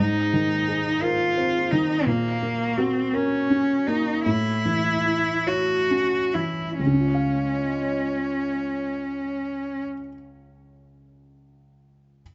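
The recording has a soft, intimate sound with light reverb and a dulled top end, and it is cut from a longer neoclassical piece for piano and strings in D-flat major. In a hopeful mood, it moves in a rubato 6/8 at roughly 44 to 58 beats per minute, counted in dotted quarters, and it slows down through the opening bars until 6.8 seconds. A warm concert grand piano carries the accompaniment up front, with a deep bass and short sustain. A single bowed cello sits up front as the second line, and its tone is rich, smooth and even, with vibrato. In the background, a dark, warbling, tape-like pad holds sustained chords with a slow attack, long release, chorus and its own reverb, giving a nostalgic, lo-fi shimmer. The harmony passes through Abadd9, Gb/Bb and A before landing on Db at 6.8 seconds, and after the cello and pad stop at 9.8 seconds the piano plays alone to the end.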